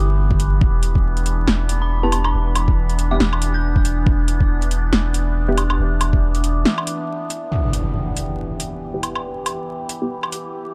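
A half-time groove with swung sixteenths drives this dark, cavernous slice of deep dubstep, cut from a longer piece and steeped in vinyl crackle and a dark, warm production. An overdriven, layered electronic kick anchors the opening alongside a punchy snare, metallic hi-hats and woodblock from an up-front drum kit, while a round, soft sub bass of triangle and square waves sits beneath. Over a nasal, resonant drone of slow-blooming sustained chords with moving overtones, an eerie, inharmonic FM bell rings faintly in the background through chorus, phaser and dub echo, and muted, detuned chord stabs pluck out short, filtered hits. After a brief break at 6.7 seconds, an electronic impact lands at 7.5 seconds, and the returning stabs gain a filter sweep. The drum kit and drone carry the passage onward as it closes.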